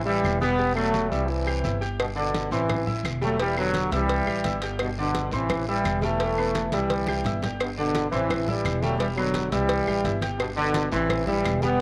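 A bright, up-front trombone section with slapback echo carries the melody over a dark, thumpy pizzicato upright bass on gut strings from the very start of this sunny, danceable salsa excerpt, joined at once by a clear, intimate baby grand piano with audible action noise and short sustain, very quiet damped low-tuned congas, a raspy saturated guiro and woody claves in the background, while a round, low-tuned cowbell played close and dry with hard hands enters at 2.0 seconds, all sitting in a moderate spring reverb.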